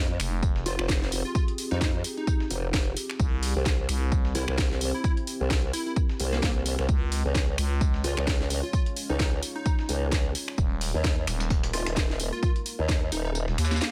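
A wobbling formant-sweep bass opens this bouncy, aggressive bass house excerpt at 130 BPM in F minor, soon joined by a growling, thick FM bass, both overdriven, up front and pumping against the sidechain, over chords moving from Fmadd9 through C and Db to Ebsus4. A punchy overdriven electronic kick anchors a layered house drum kit of cracking snare, bright hats and finger snaps, while a gritty, sampler-style soul kit of hi-hat, snare and tambourine sits in the background. A catchy, detuned unison lead carries the melody with phaser and digital delay, a deep, moody analog pad with chorus and phaser lurks beneath, and the kick drops out at 13.3 seconds in a dry mix.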